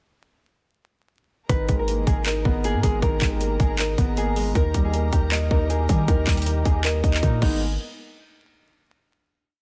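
A tape-warm trap drum kit sits up front in this brooding, melancholic hip hop piece, laying down a half-time beat with a hard-clipped kick, metallic hi-hats racing through fast rolls, handclaps and a crash cymbal. Beneath it, a deep, boomy 808-style bass plays long sub-bass notes that follow the kick, with pitch slides and a fast attack that decays away. A small, fingerpicked nylon-string guitar carries a looping melody, and a soft, felt-muted upright piano rolls through a rising and falling eighth-note arpeggio; both are repeated like sampled loops and dulled by a low-pass filter. In the background, a veiled, con sordino string section holds dark sustained chords with light vibrato, moving between G#madd9 and D#. Everything enters together at 1.5 seconds for a single hook that gives way at 7.6 seconds to a final hit ringing out to 9.1 seconds. Vinyl crackle, light reverb and a small room ambience colour the dense, heavily limited master.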